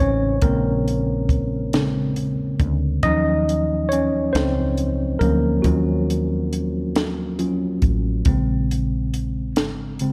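A moderate echo-chamber reverb gives this short cut from a longer piece a late-night, yearning glow: a slow R&B in six-eight at 46 BPM in B-flat minor. A worn, slightly out-of-tune tine electric piano sits up front and solos throughout, moving from Bbm9 to Ebm9 and back, over a round, hollow-body fretless bass with a woody, dark tone. A compact cocktail kit joins at 0.4 s with a punchy kick, a high-tuned snare and hi-hat, its top rolled off in a small-room sound.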